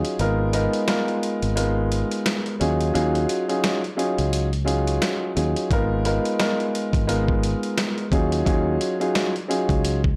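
A dark, mellow concert grand piano opens this reflective, gritty boom-bap hip-hop excerpt alongside a dusty, sampler-style soul drum kit with a thumpy kick and a medium-tuned snare, and a round, fingered electric bass enters at 0.2 seconds. The piano sits up front with audible action noise, long sustain and a vintage cassette-tape tint, moving between G#m69 and D#m11, while the compressed drums carry the sound of a large room and the bass picks up transformer saturation. The whole cut has a dry, gritty hardware character with a digital ambience and a swung sixteenth-note feel.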